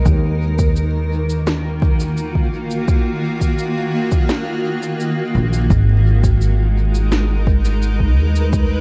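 This short cut from a longer ambient dub piece has a dark, warm production with little reverb and a vinyl crackle underneath. At 85 BPM in a straight 4/4, the mood is spacious and deep, tuned slightly low to A4 = 439 Hz. A granular cloud pad opens at 0.0 seconds and sits up front with sustained, detuned unison chords that blur and evolve through slow attacks, long releases and their own built-in reverb. From 0.1 seconds, a growly pizzicato upright bass with a woody, steel-strung tone joins alongside an electronic kick that lands deep and tape-warm, carrying the air of a large room. Quieter electronic cabasa and snare, the snare woody and tape-warm, trail off in dub echo, while the harmony moves from D#madd9 to G#m9 at 5.7 seconds.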